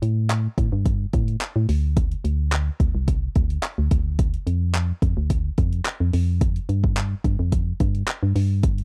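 An organ-like FM bass with a hollow, percussive, dark tone and sidechain pumping sits up front beside a layered deep house drum kit of deep kick, hi-hat and handclaps, tape-touched from a small room, driving this confident, energetic dance-pop excerpt at 108 BPM in a dry, close 1970s-style studio sound.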